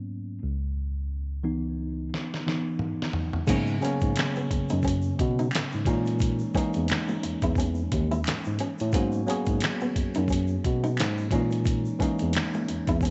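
A worn, slightly out-of-tune tine electric piano opens this smooth, late-night neo-soul excerpt alone, one voice voicing chords through its built-in speakers while a second, heard direct and up front, carries the bass line. A drum fill from a dusty, sampler-style kit arrives at 2.1 seconds, and from 3.5 seconds the full groove settles in at 88 BPM in 4/4 with a lazy swing on the sixteenths. The kit is gritty and compressed, with a thumpy kick and fat snare re-recorded in a large room, sitting up front alongside hi-hat, finger snaps, toms and a crash. A fingerpicked nylon-string guitar adds a classical second line from 3.8 seconds, while a very quiet, distant egg shaker and group handclaps drift in the background. The harmony moves from C#m9 through G#m11 and A#m7b5, and a light reverb and a dark top end with nothing above 8.0 kHz keep the whole mix soft and hazy.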